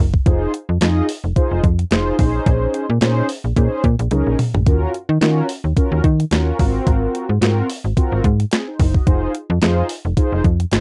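Funky and slick, this early-eighties boogie funk excerpt, swung on the sixteenths, rides a snappy FM slap bass with a metallic attack and a clean 12-bit drum machine with a thumpy kick, medium-tuned snare, hi-hat, handclaps and toms, both up front. Mellow synth brass enters at 0.3 seconds with round, detuned sawtooth tones, chorus, vibrato and a filter sweep, colored by a cassette-tape quality. It sustains chords moving from Fm7 through Bbm11, Ebm9 and Ab13, while a drum fill lands at 4.1 seconds in a lightly reverberant home cassette recording.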